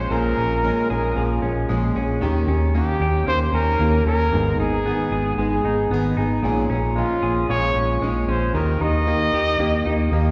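A jumbo, full-bodied fingerpicked steel-string acoustic guitar, a woody, slightly detuned upright piano in the background, twangy spring-reverbed arpeggios from an electric guitar through a small old amp, and a round, foam-muted vintage electric bass open this breezy, nostalgic indie pop passage at 114 BPM in Eb mixolydian, joined at 0.1 s by an up-front, breathy trumpet melody with scooped notes and vibrato as the harmony moves through Bbm7, Eb7 and Abm, the whole band set in a wet concert hall reverb.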